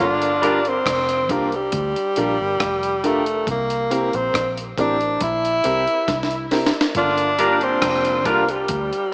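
A gritty, thumpy sampler-style breakbeat kit sets a straight, hypnotic and heavy dub reggae groove at 69 BPM in G dorian. Beneath it sits a dark, foam-muted fingered electric bass, while a close-miked tenor saxophone with vibrato carries the melody through dub echo and a boxy concert grand piano drops echoing stabs from 0.4 s. After a drum fill at 6.1 s, a punchy horn section returns around 7.0 s alongside a twangy, slightly broken-up electric guitar with spring reverb. The whole mix sits in a moderate echo chamber with a small-speaker sound, in this short cut from a longer piece.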